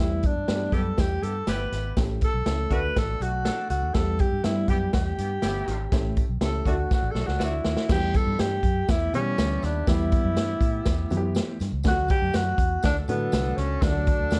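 An uptempo 1960s-style soul excerpt in E dorian at 122 BPM opens with a warm, vibrato-laden tenor saxophone soloing up front with plate reverb over a woody, slightly detuned upright piano and a round, foam-muted electric bass, joined at 0.2 seconds by a punchy, small-room drum kit and a jingly, very quiet tambourine, then at 0.7 seconds by a distant, roomy horn section on a second line, with a drum fill at 6.9 seconds leading into a new section at 7.9 seconds, all in a dark, driving and passionate production.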